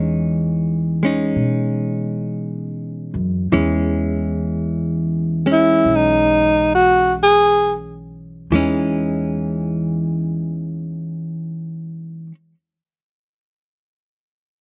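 Tender and intimate, this slow swung jazz ballad in E major, tuned to A4 = 436 Hz, drifts between 43 and 59 BPM and slows through its first 8.5 seconds. A dark, clean, compressed hollow-body guitar sits up front with Emaj13 and E6 chords over a woody, thumpy pizzicato upright bass. A warm, close-miked tenor saxophone enters at 5.5 seconds with soft-attacked, scooped, vibrato-laden notes until 7.7 seconds, all in a dry outdoor recording with little reverb.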